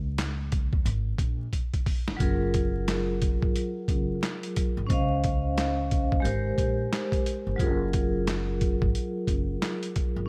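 Bright, ringing vibraphone with medium hard mallets, slow motor vibrato and a cassette-tape, filtered tint enters up front at 2.2 seconds over lush maj9 chords in Gb lydian in this nostalgic boom-bap hip-hop excerpt at 89 BPM with a swung 16th-note feel, following an opening break and drum fill from a gritty, pitched-down, compressed sampler-style kit of thumpy kick, medium-tuned snare, handclaps and hi-hat, while a woody, dark pizzicato upright bass anchors the low end beneath light reverb, small-room ambience and vinyl crackle.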